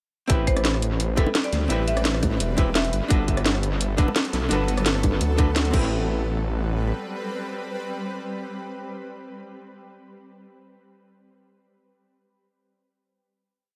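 Melancholic and dreamy, this short liquid drum and bass piece in A dorian runs at 171 BPM, opening straight into a drop where a tight, up-front electronic kick and a rolling two-step kit with cracking snare, metallic hats, rim clicks and crash drive a menacing, saturated detuned saw bass that evolves through a filter swell over chords moving from Am9 to Gmaj9 and back. A dark, clean hollow-body archtop guitar plays held rootless chords with syncopated pushes through analog delay, while a woody marimba struck with hard mallets adds short answering phrases soaked in dub echo in the background, and quiet, low-tuned bongos patter lightly from 1.3 seconds. After the drums drop out, a final hit at 5.9 seconds lets the bass carry on until 6.9 seconds, while the guitar and a shimmering, ethereal granular pad with chorus and octave-up sparkle, pumping gently against the beat, ring out in an echo-heavy mix.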